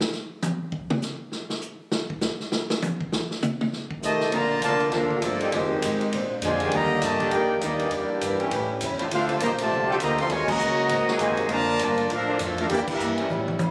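A vintage drum kit with a punchy kick and rolled-off top opens alone for the first 4 seconds of this energetic, joyful big band swing excerpt at 201 BPM in Bb major, before a clear trumpet section takes the melody over a soft-attack trombone second line, a boxy, very quiet picked archtop guitar, a woody pizzicato upright bass and bright background trombone chords, with band accents at 10.5 and 12.8 seconds and a closing drum fill, all caught on a phone in a reverberant club.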